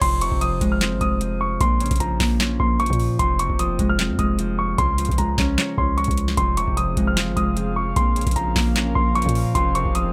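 A dark, mellow grand piano carries a high melody through a low-pass filter and tape echo, while a ringing, fingerpicked Celtic harp sits up front with the accompaniment, a deep, decaying 808-style sine bass hums in the background, and a booming, dry analog drum machine drives it all with an overdriven deep kick, crisp snare, metallic hi-hats, handclaps and crash. This hard-hitting, melancholic trap passage moves at 151 BPM in a half-time feel in F minor, cycling through Fm, Bbm and Db under light reverb. At 6.7 seconds a nostalgic, lo-fi pad with a detuned, warbling chorus swells in with a slow attack and sustained chords, adding a hazy layer as the excerpt runs on.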